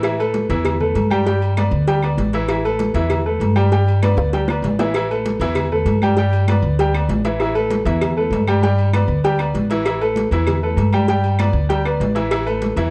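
A thumpy, dark pizzicato upright bass on gut strings and a bright, polished upright piano sit up front in this passionate, fiery salsa excerpt at 196 BPM, swaying between Asus2 and G over tight dry cowbell and bongos, with ringing high-tuned congas, metallic agogo bells and timbales, and woody claves in the background, a drum fill at 4.0 seconds and light reverb, all colored by the warbling pitch drift of worn cassette tape.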